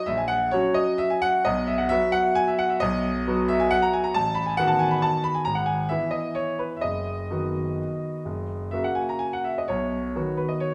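A clear concert grand piano sits up front in a lush recital hall reverb, its deep bass ringing out beneath an open top that reaches B5. This playful, elegant classical waltz in B major moves in 3/4 at a flexible 121-146 BPM, the solo pianist shaping each phrase with rubato. Cut from a longer piece, the passage travels through B7 and E harmonies before settling back on B at 9.7 seconds.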